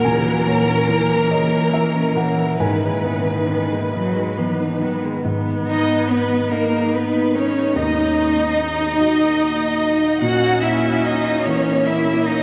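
A rich, up-front chamber violin section carries a longing melody over a focused solo cello's second line, a felt-muted upright piano's mellow, intimate accompaniment and a distant viola with portamento, joined at 0.3 seconds by a very quiet, deep, evolving pad, in this reflective neoclassical passage in G# minor and 6/8 at a rubato 45-50 BPM, cut from a longer piece and bathed in a vast cathedral reverb.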